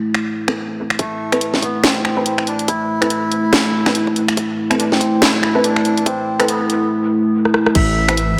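Deep dubstep in A minor at 142 BPM with a swung half-time feel, heavy and brooding, where a dark, detuned analog pad with chorus and 12-bit sampler grit sustains chords up front while a garage kit of cracking snare, bright hats, rim clicks, finger snaps and crash is joined by a tight, filtered electronic kick; muted, mellow dub chord stabs enter at 0.5 s, and they and a reedy, breathy melodica drift through dub echo during a build-up from 1.0 s that ends in a drum fill at 7.4 s, before a deep, rumbling, saturated saw bass lands at 7.8 s, all soaked in a lush hall reverb.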